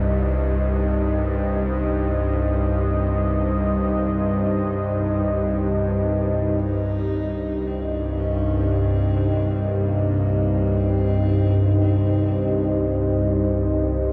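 A huge, wet reverb with an 8.0-second tail wraps this dark, warm production, giving the piece a cavernous, desolate atmosphere. It is a dark ambient drone in C minor, moving in free time and resting on a single C minor chord, with an ominous mood throughout this excerpt. From the start, a bowed-like drone holds the low register: a string-like, tense, warbling sawtooth tone with a vintage character, a noise layer, vibrato and its own reverb, placed up front. Above it, a deep, moody analog pad sustains full-bodied chords from detuned sawtooth and triangle waves with a sub octave, softened by chorus and slow attacks. At 6.6 seconds a single horsehead fiddle enters quietly with a rich, nasal, earthy melody, its boxy, husky horsehair tone carrying light vibrato and portamento through a delay. The fiddle stops at 12.8 seconds, leaving the drone and pad to hang in the reverb until the excerpt ends.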